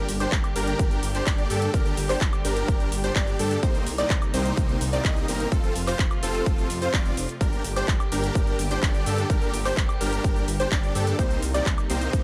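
Dry, this emotional, powerful cut of festival progressive house sets a huge, compressed supersaw riff over a thick, chorused detuned saw bass, with a punchy square-wave pluck arpeggiating in the background and dark bowed chamber strings holding smooth chords beneath, these four parts pumping to the sidechain, while a dance kit of metallic hi-hats, handclaps, shaker and woodblock arrives at 0.1 seconds and an up-front layered kick lands at 0.3 seconds.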